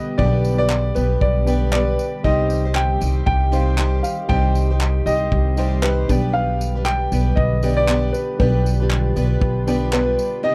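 A dark, woody upright piano carries a reflective, tender melody over a very quiet baby grand with audible action noise, a shimmering octave-doubled twelve-string guitar with finger squeak, and a glassy, ethereal FM pad, moving from G/B to Cm and back to G/B. From 0.2 seconds a thumpy, up-front pizzicato upright bass and a natural small-room country kit of punchy kick, handclaps and tambourine join at 117 BPM in 4/4 with a light sixteenth-note swing. This acoustic pop fragment has a dry, close 1970s-style studio sound.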